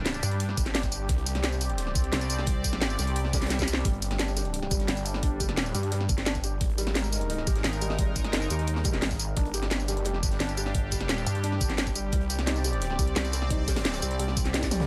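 Tense and mechanical, this dark technical drum and bass runs at 174 BPM in a straight 4/4, a drop cut from a longer piece that holds from the first second to 14.9 seconds. Two basses sit up front: a snarling distorted saw bass, growling and aggressive with tube saturation and a moving notch, and a pulsing pluck wobble bass, heavy and detuned with chorus. The drum and bass kit brings a cracking snare, bright hats, tambourine and toms, layered over a knocking electronic kick, while a crunchy breakbeat kit with a high-tuned snare sits very quiet beneath, gritty and rolled-off. An airy, evolving sawtooth pad with a noise layer and filter swell holds sustained chords with chorus and sidechain pumping, and a brief electronic swell appears at 3.3 seconds. From 3.9 seconds a felt-muted upright piano adds soft, intimate arpeggios with audible action noise, treated with digital delay and sidechain pumping, all set in a digital ambience over chords moving between G5, C5 and Ab5.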